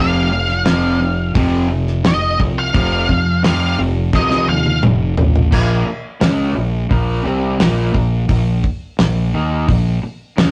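A dark octave-fuzz lead guitar solo opens this swaggering, driving classic rock excerpt in Bb minor at 86 BPM, riding over a crunchy overdriven rhythm guitar riff, a bright distorted guitar in the background and an up-front fingered bass thick with fuzz. A damped 70s drum kit with a fat snare, tight kick and dark cymbals joins at 0.5 seconds, its dry hits roughened by 12-bit sampler grit, and a drum fill carries the band from the F5 chord into a Bb minor section at 5.5 seconds, after the lead has dropped out at 4.8 seconds. The rough rehearsal-room sound has cassette-tape saturation and a short, wet studio reverb.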